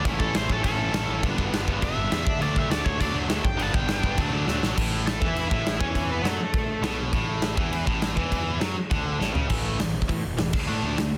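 An overdriven lead guitar with tape echo tears into a solo over a tight, double-tracked distorted riff, fuzzy picked bass and a punchy, up-front acoustic kit with bright cymbals in this energetic, rebellious punk rock excerpt, with the lead dropping out at 7.0 seconds and drum fills at 4.5 and 9.2 seconds pushing the dense, dry, heavily limited mix forward.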